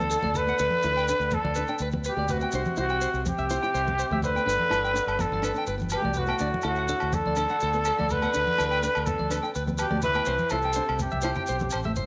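A growling, raspy trumpet carries the melody up front, with a scooped, jazz-style vibrato, over a gritty tenor saxophone second line, a dark fingerpicked flamenco guitar, a warm fingered electric bass and grainy, close maracas. This sunny highlife guitar band cut soon gains low-tuned congas struck with hard hands and a slightly broken-up electric guitar picking arpeggios through spring reverb and slapback echo, all cycling through D, G and C. Ringing agogo bells join in the background at 4.7 seconds, and light reverb gives the whole a gentle studio ambience.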